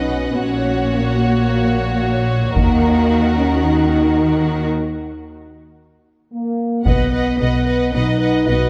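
Mellow French horns hold sustained chords at the heart of this heroic, epic orchestral film-score cut, taken from a longer piece at 111 BPM in 4/4. Intense, distant violins carry the melody over a smooth second violin line and clear chamber violas, while focused cellos and up-front double basses anchor the bass, all bowed with vibrato in a wet concert hall. Heavy-stick taiko drums strike at 2.6 seconds and return at 6.9 seconds, after a break that begins at 4.7 seconds.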